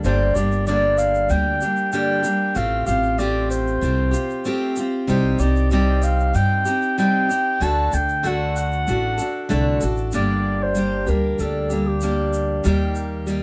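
Picked steel-string acoustic guitar with a warm tone and woody pizzicato upright bass sit up front beside a grainy, bright egg shaker in this intimate, melancholic acoustic folk piece, while a dark, distant clarinet in a classical style carries a roomy solo from 0.1 to 12.8 seconds, heard through close, detailed microphones and light reverb.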